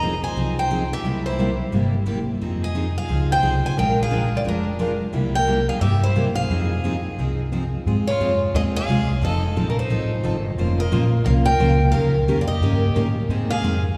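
A woody, thumpy gut-string upright bass sits up front in this bittersweet, virtuosic gypsy-jazz swing excerpt, under a boxy parlour steel-string guitar that carries the melody with audible finger squeak, a biting, nasal bowed fiddle on a second line, a full-bodied dreadnought guitar with fresh strings and a bright concert guitar in the background both picking accompaniment, all bathed in a wet church reverb.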